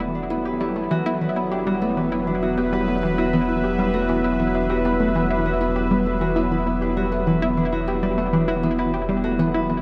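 Hypnotic and expansive, this excerpt of sequencer-driven ambient space music unfolds in a vast, echoing space, carried by a bright, up-front sawtooth pad whose detuned, chorused chords evolve through a soft-attack filter swell and long release. Beneath it, a tight, driving sequenced synth repeats a mellow, detuned riff with a fast filter pluck, chorus and tape echo. A fingerpicked acoustic Celtic harp adds ringing arpeggios through tape echo, while a deep, round sine sub bass holds a warm low E throughout.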